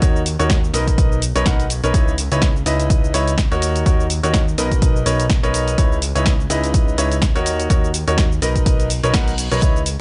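Dry and dark-topped, this bittersweet, energetic piano house excerpt at 125 BPM with a light 16th-note swing sets a bright, intimate baby grand riff, up front with audible action noise, long sustain, digital delay and sidechain pumping, over Bmaj9, C#m9 and D#m7 chords, a fat, detuned sawtooth analog bass that also pumps, a punchy tape-warm electronic kick, an analog drum machine's hi-hat, shaker and snare, and a faint reverse cymbal entering in the background at 8.9 seconds.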